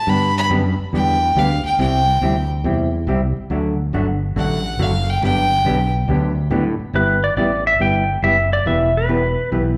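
A swung eighth-note feel at 140 BPM in 4/4 drives this playful, down-home country excerpt in G major, tuned slightly low at A4 = 439 Hz. A clear, earthy fiddle with light vibrato opens the excerpt with a solo, bowed by a single player up close with slapback echo, and falls silent at 5.9 seconds. Underneath, a dark, clean hollow-body jazz guitar plays fingered accompaniment through G, C, D and Gmaj7 changes, while a fretless electric bass sits direct and up front in the low register. At 7.0 seconds a compressed lap steel guitar takes the melody with slide and volume swells, also carrying slapback echo, as the harmony moves to G6 and Em. The whole band is heard as a live club gig through the venue's PA, wrapped in light digital reverb.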